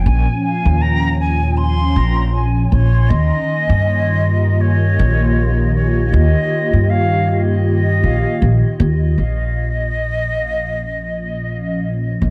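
Set in a moderate echo chamber that gives the whole recording a soft, roomy depth, this meditative ambient dub fragment has a lilting swing, taken from a longer piece. A woody, thumpy pizzicato upright bass sits up front with a touch of tube saturation, beneath a smooth, detuned sawtooth pad carrying chorus-tinged sustained chords that move from Bbm9 to Eb7 at 3.1 seconds and settle on Bbm at 9.2 seconds. Over it, a distant, airy concert flute sings an expressive, vibrato-laden melody through a dub echo until it falls away at 11.8 seconds.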